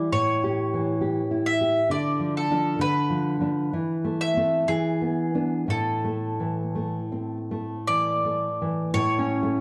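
Set in a moderate recital hall reverb with a dusky, mellow production, this short clip from a longer romantic duo unfolds in a yearning, melancholic 3/4 at a rubato 51-68 BPM. The picked mandolin carries the melody with a round, double-string tone, while the thumb-plucked nylon-string guitar supplies dark classical accompaniment, both sitting up front for the full 9.6 seconds. The harmony moves from A7 through Dm and E7 to Am, then resolves on an A major chord at 9.0 seconds.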